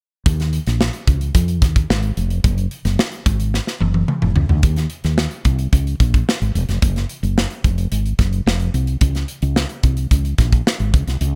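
Polished 1980s jazz-funk pop with a bittersweet, slick mood, this short excerpt pairs a dark, round, punchy fretless electric bass with a tight, airy studio drum kit of hi-hat, kick, snare and toms, both up front in a dry mix, with a drum fill from 3.5 to 4.6 seconds leading into the second section.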